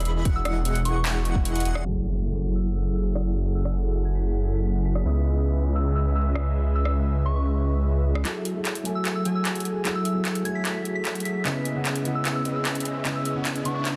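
This future bass excerpt opens in the middle of a drop at 150 BPM in a half-time 4/4 feel, on an Emaj9 chord. A fat, detuned sawtooth polysynth riff carries the harmony, touched with chorus, cassette tape color and sidechain pumping. A thick, saturated unison saw bass sits up front beneath it. A trap kit supplies metallic hats, handclaps, rim clicks and crash, with soft clipping on the snare. A hard-clipped electronic kick punches through briefly, and an airy, dreamy lead flickers through arpeggios before dropping out at 1.8 seconds. From 0.4 seconds a pure FM bell melody rings high above, colored by phaser and dub echo. At 1.8 seconds a felt-muted upright piano enters with intimate, boxy accompaniment, and at 1.9 seconds a very quiet impact lands. The chords turn to F#m9 and C#m9 under a filter sweep. After the bass stops, a drum fill, a riser and a sweep on the polysynth drive a build-up through to the end. 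The whole piece is playful and euphoric, sitting in light reverb within a dense, heavily limited modern master.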